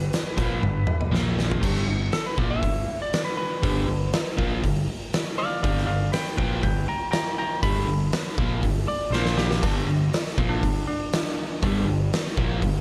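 Light reverb frames a gritty, driving cut from a longer blues rock and southern rock piece, set at 120 BPM in a straight 4/4 and tuned to A4 = 443 Hz. An oversized, low-tuned acoustic drum kit sits up front in a bright stone room that pumps, with dark cymbals, a fat snare and a punchy kick, all saturated; it plays fills at 0.6 and 9.1 seconds. Underneath, a picked electric bass pushes a round, dark fuzz tone, both direct and amped, while a double-tracked semi-hollow guitar plays an overdriven, bright, picked riff near the front. At the opening, a warm overdriven slide guitar sits in the background with tape echo and drops out at 1.1 seconds. A compressed, slightly broken-up lead guitar carries a second line from the start, then takes a solo from 1.6 seconds onward, moving over a G-centred progression with Bb5 and G5 power chords.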